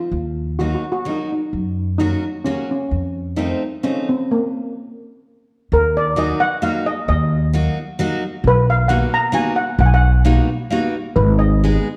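A rubato musette waltz in 3/4 at 130 BPM, whirling and nostalgic, set in a dark recital-hall reverb and cut from a longer piece. A shimmering steel pan played with rubber sticks carries the airy, metallic melody up front. A bright, full-bodied picked jumbo acoustic guitar, finger squeaks audible, picks out the accompaniment. A growly, woody pizzicato upright bass on steel strings also sits up front. Everything halts for a break at 4.3 s, and at 5.7 s the music settles into Eb minor for the second section, moving through Bmaj7 to Abm.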